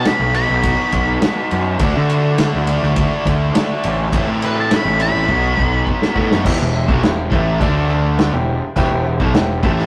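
A dark, fuzzed octave lead guitar plays a solo over the opening 6.4 seconds of this swaggering, driving classic rock passage in E minor at 103 BPM, cut from a longer piece. A round, punchy fuzz bass sits up front beneath two overdriven rhythm guitars playing riffs, a crunchy one with spring reverb and a brighter cranked stack further back, while a vintage kit with dark cymbals and a punchy kick plays a fill before a brilliant baby grand piano enters in the background at 6.4 seconds. The rough rehearsal-room recording has tube saturation and a moderate stone-room reverb.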